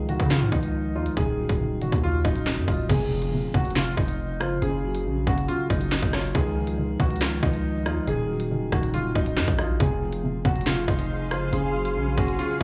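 Drill hip hop at 139 BPM in a half-time feel, cold and tense in F phrygian, where a clear, woody upright piano melody with subtle chorus and diffuse delay rides over a felt-muted, dark upright piano, a heavy, aggressive distorted 808-style bass, and an up-front drill kit of hard-clipped kick, sharp snare, crisp hats, handclaps, rim clicks and crash, with a very quiet electronic impact at 2.9 seconds and a blurred, detuned granular cloud pad entering at 10.8 seconds, all in light digital room ambience in this cut from a longer piece.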